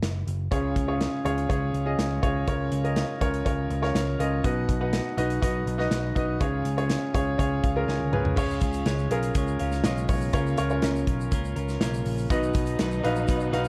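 A clear, intimate baby grand piano with audible action noise sits up front in this anthemic piano-driven pop, adding fills over punchy picked electric bass and a studio drum kit with bright cymbals, before a twangy, compressed clean electric guitar riff and a grainy, mellow tube shaker enter at 8.4 seconds and a distant, lush bowed string section adds very quiet sustained chords at 12.3 seconds, in a dark production with light small-room reverb.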